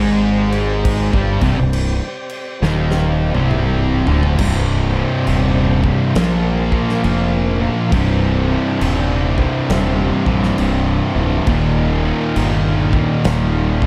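Stoner and doom metal with a sludgy, heavy mood and a swung, plodding feel, this fragment is driven by a growly, overdriven fingered bass up front, with two dark fuzz guitars in the background and a bright, double-tracked tight distorted guitar grinding out low riffs over chords moving from Cm through Bb5 to Eb. A big acoustic rock kit with a punchy kick, medium-tuned snare, toms and bright crash cymbals joins at 0.5 seconds and plays a fill from 2.6 to 4.4 seconds. Beneath it all, a very quiet, smooth tonewheel organ holds clean sustained chords through a rotary speaker, inside a small room and a dark, warm production.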